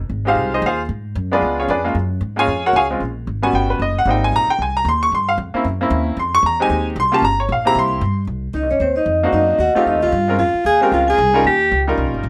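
A brisk small-group swing at 227 BPM in 4/4, with a lightly swung eighth-note feel, drives this cool, late-night bop passage in F minor, cut from a longer piece. The pizzicato upright bass, woody and dark on steel strings, sits quietly beneath a bright upright piano that comps up front with a brilliant, intimate presence, its slightly detuned tone and audible action noise adding character. For the first 8.3 seconds only bass and piano move through changes such as Fm7, Db7b9, Gbmaj9 and Eb7alt. Around 8.5 seconds a warm, close-miked alto saxophone enters on a second line with scooped notes. Alongside it, the vibraphone, played with medium mallets and motor off, carries the melody in a metallic, ringing voice with a boxy small-room quality. A moderate club reverb frames the group as the harmony turns toward F7, Bbm9 and Eb7 before the cut ends.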